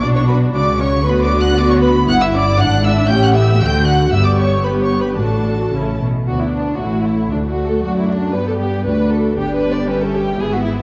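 Lively and graceful, this brief cut from a quick classical-period movement for string orchestra moves at 117 BPM in 2/4 with a rubato feel, in D major, opening on B minor before settling toward D by the turn at 6.3 seconds. First violins carry a soft-attacked, expressive melody high above a more distant second violin line, while a lush, focused viola section fills the middle. Close, smooth cellos and clear, intense double basses share the bass, all set in a moderate scoring-stage reverb with a dark production and vinyl crackle.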